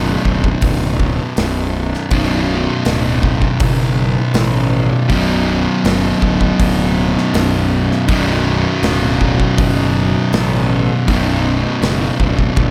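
Stoner and doom metal in B minor at a slow 80 BPM, this ominous, sludgy fragment cut from a longer piece rests on a single B minor chord. A double-tracked, distorted fuzz guitar sits up front with a low riff, over a bright, growly picked electric bass with overdrive, while an acoustic rock drum kit enters at 0.3 seconds with a punchy kick, medium-tuned snare, hi-hat and toms, all set in a small room reverb.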